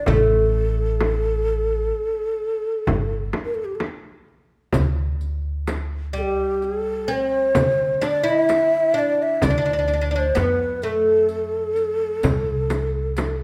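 A breathy, hollow ney carries the melody up front, its soft attack and vibrato giving this Arabic maqam ensemble a longing, melancholic cast. Beneath it, a bright, fretless oud plays a second line with the double-stringed twang of a plectrum, while a pizzicato upright bass adds a woody low end. A deep, large frame drum sits close and dry, and a crisp metal-shelled darbuka played with soft hands stays in the background. The piece moves at 128 BPM in eighths over a straight 10/8 metre, tuned to A4 = 437 Hz. A riq with bright jingles joins at 4.7 seconds, just before the music settles into D maqam rast at 4.8 seconds, when a new section begins. Light reverb surrounds the ensemble in this passage cut from a longer piece.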